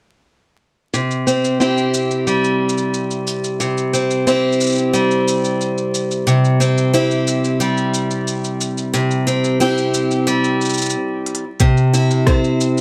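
Vinyl crackle and a moderate studio ambience frame this pastoral, playful folktronica excerpt from a longer piece, where an up-front, bright and boxy parlour steel-string guitar picks arpeggios with finger squeak through a low-pass filter and tape echo over a crisp-hatted organic electronic kit of hi-hat, rim click and shaker, re-recorded in a small room, until a stop at 10.9 s gives way to a drum fill and a soft electronic kick that enters at 11.6 s.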